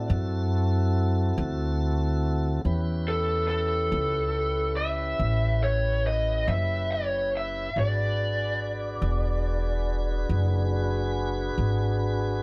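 This slow 12/8 blues opens with a woody, thumpy pizzicato upright bass, a round, dark tonewheel organ holding sustained chords through a slow rotary speaker with a touch of key click, and an overdriven, lo-fi electric guitar picking a melody up front. At 47 BPM the mood is swaggering yet laid-back as the harmony moves from D7 to A7 at 2.6 seconds and E7 at 7.7 seconds. The dry sound keeps the bass and guitar forward, and the guitar drops out at 12.0 seconds just before this cut from a longer piece ends.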